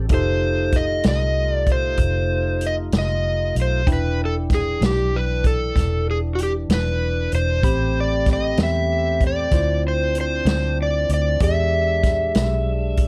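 Slow blues in 12/8 with a mournful, smoky mood, where an overdriven slide guitar carries the melody up front over a foam-muted, round electric bass, a vintage drum kit with a punchy kick and medium-tuned snare, barky tine electric piano accompaniment through a combo amp, and a clean tonewheel organ turning on a slow rotary speaker in the background, set in light reverb as the chords move from F7 through Em7, Am7 and Dm7 to E7#9.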